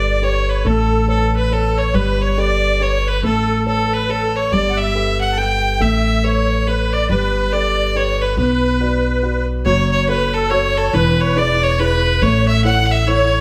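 Dark yet lively and driving, this Celtic folk waltz moves at 140 BPM in 3/4, its eighth notes carrying a light swing. A bright, nasal fiddle carries the melody with an earthy, distant bowed tone, while a reedy musette accordion plays a second line, its shimmering wet tuning captured close and dry. Beneath them, a dark, mellow upright piano supplies woody accompaniment, and a thumpy pizzicato upright bass with steel strings sits up front in the low register alongside the fiddle. The harmony rocks between Gadd9 and Aadd9 before settling on B minor, then at 9.7 seconds the tune turns to F# minor and moves through E and A. All four instruments play throughout, the whole ensemble set in a moderate recital hall reverb, tuned to A4 = 442 Hz, in this passage cut from a longer piece.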